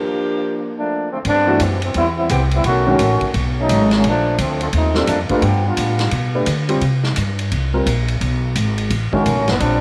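A brisk 172 BPM swing in 4/4 drives this sultry big band jazz excerpt, opening on a stop-time figure where a dark, tightly voiced saxophone section states the melody with light vibrato before falling away at 0.9 seconds. A mellow trombone section joins just before and carries the music from there, taking a roomy, jazz-styled section solo from 1.3 seconds over a harmony that moves through rich chords such as Cmaj7, B13 and G7. The rhythm section arrives at 1.2 seconds: a woody, growly pizzicato upright bass sits up front with a thumpy weight, while a swinging acoustic drum kit with dark cymbals, a medium-tuned snare and a punchy kick keeps time on hi-hat and ride in a big, natural-sounding room. A baby grand piano adds intimate accompaniment, its audible action noise lending a close, unvarnished character. A moderate spring reverb glows around the ensemble, giving the short cut a smoky, late-night feel.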